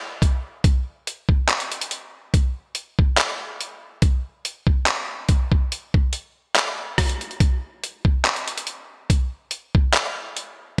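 A late-night, sensual mood hangs over this short R&B excerpt, cut from a longer piece and moving in an unhurried 4/4 with a light swing on the sixteenths. The only part is a dusty soul sampler-style drum kit, playing from 0.2 to 10.6 seconds with handclaps, hi-hat, kick drum and rim click. The kit sits up front, compressed and gritty, with a thumpy kick anchoring the groove and the sounds kept at their natural pitch. Light reverb and a digital ambience frame the drums, lending the recording a bright 1980s-style digital production sheen.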